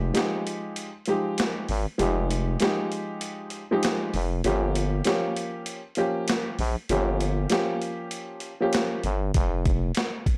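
A growling FM bass anchors this moody boom-bap hip-hop excerpt, its thick, sine-rooted tone sitting up front with a fast attack and sustained notes low in the register. It moves at 98 BPM in 4/4 with a 61% swing on the sixteenths, giving the groove a loping lean. A dark grand piano supplies the accompaniment, its mellow, vintage voice filtered at both ends and clipped by a short sustain, outlining Fm9 before shifting to Gm7b5 at 4.4 seconds. The sampler-style drum kit joins at 0.1 seconds with a thumpy kick, a high-tuned snare and hi-hat, compressed and gritty, carrying the roomy character of being re-recorded in a large space. The overall sound is dry and rough-edged, like a hardware production, and the chords drop out at 9.3 seconds, with the bass holding on until 9.9 seconds and the drums carrying on to the cut at 10.4 seconds.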